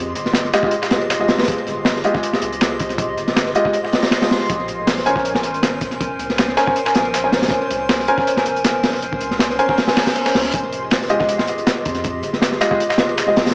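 Atmospheric, nostalgic drum and bass in the jungle style at 159 BPM in F minor, where a crunchy, punchy breakbeat kit with a high-tuned snare sits up front over a gritty, sampler-style soul kit in the background, a deep saturated sub bass, a warbling lo-fi pad holding detuned chords from Fm9 to Bbm9, dark mellow grand piano stabs entering at 0.5 seconds, a dreamy reversed swelling texture, and a brief reverse cymbal at 9.9 seconds, all wrapped in an echo-heavy, small-speaker sound.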